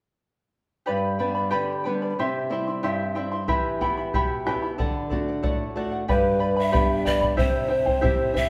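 A straight, even 2/4 pulse drives this earthy, festive Andean folk fragment, taken from a longer piece. From 0.9 seconds a fingerpicked charango, shimmering with its doubled and partly octave-doubled strings, sits up front alongside a dark, fingerpicked acoustic flamenco guitar in the lower register, the two sharing accompaniment duties over a G, C, Em, D progression. A deep bombo joins at 3.5 seconds, its acoustic thump carrying a small-room character. At 6.1 seconds the music moves into a new section as large cane pan pipes take the melody, breathy and hollow with a straight tone and a tongued chiff, placed close and prominent. A large studio reverb gives the ensemble the sense of a band playing live together in one room.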